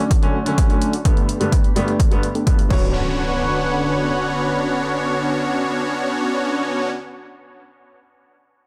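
A punchy, up-front electronic kick and a layered big-room kit of crash and hi-hat drive a straight 4/4 at 127 BPM until 2.8 s in this emotional, anthemic festival progressive house fragment in B minor, where huge, bright, detuned supersaw chords carry the riff through a filter sweep, cassette tape coloring and dub echo, a thick, warbling vintage pad holds chorused sustained chords, a clear yet worn baby grand piano adds accompaniment with its own dub echo, sidechain pumping moves those three parts, an electronic impact lands at 2.7 s, and the Dmaj7, Gadd9 and Bmadd9 chords sit in light reverb.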